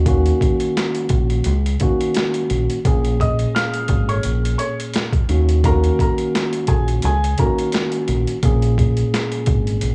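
A dry, gritty cassette-toned recording with small-room ambience carries this moody boom-bap hip-hop excerpt at 86 BPM with a light 16th-note swing, where a mellow tine electric piano comps over Ebm7 and Bbm7 chords, a round, punchy fingered electric bass sits up front, a pitched-down, overdriven sampler-style drum kit adds a thumpy kick and high-tuned snare with 12-bit grit, and from 3.2 to 7.9 seconds a woody, slightly detuned upright piano plays a high melody through analog delay.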